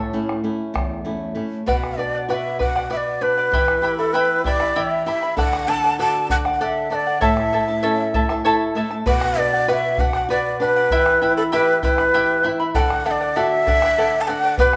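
Earthy and wistful, this Andean folk excerpt in B minor moves at a slow 65 BPM in a straight 6/8, with a shimmering, fingerpicked charango on doubled strings and a fingerpicked flamenco guitar opening on A over a deep, dry bombo, until a breathy, bright wooden quena enters up front at 1.7 s with unsteady, tongued phrases carrying vibrato as the harmony cycles through Bm, Em, D and A, the ensemble playing live together in a large, wet studio room.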